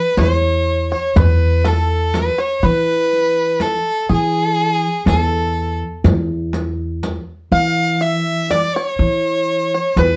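Festive and passionate, this excerpt from a Turkish makam ensemble piece in 10/8 sets a bowed solo violin up front carrying the melody with rich, smooth vibrato, while a bright, twangy fingerpicked banjo plays a second line in the background, a woody pizzicato upright bass with steel strings sits prominently, a deep, compressed and saturated frame drum is struck with hard hands, and a vintage riq adds band-limited jingles from further back, within a dark production with moderate studio reverb.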